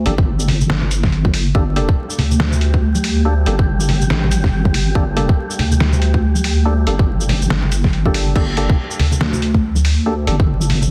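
A swung half-time pulse at 141 BPM drives this heavy, cavernous deep dubstep excerpt in G minor, where a dark, up-front wobble bass sits under a tight, tape-warm electronic kick, a gritty, pitched-down sampler-style kit of snare, hi-hat, shaker and crash, bright, close congas in the background, hollow organ stabs trailing dub echo, and an airy, breathy wind-like noise texture that enters at 2.1 seconds and stops at 8.4, over a dense, heavily limited master dusted with vinyl crackle.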